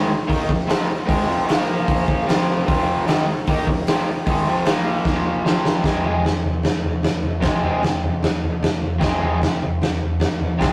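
Swaggering and menacing, this short cut from a longer garage rock piece in F minor drives at 151 BPM in a straight 4/4. A bright, overdriven, double-tracked electric guitar riff opens at 0.0 seconds with spring reverb, ranging from F2 to Ab4 over Fm and Bb5 chords. The acoustic drum kit joins at 0.3 seconds with a punchy kick, medium-tuned snare, hi-hat and toms, gritty and saturated with a rolled-off top, and a fill from 5.1 to 5.8 seconds leads into the second section of a rough rehearsal-room recording with light reverb and tube saturation.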